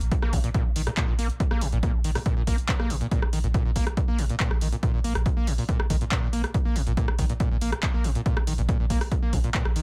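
Driving peak-time techno in a straight 4/4, this short cut from a longer piece has a hypnotic, industrial mood. An up-front electronic kick drum, punchy and tape-warm with the character of being re-recorded in a small room, anchors the groove alongside an analog drum machine carrying handclaps, hi-hat and rim click. Beneath them a deep, round sine sub bass sits in the background on Bb1, overdriven, low-pass filtered and pumping against the sidechain. The standout is a squelchy, gritty sawtooth acid bass riff between Bb2 and Bb3, resonant and distorted, with a filter sweep, fast-attack, decaying notes, subtle chorus, digital delay and its own sidechain pumping. The sound is dry, with little reverb.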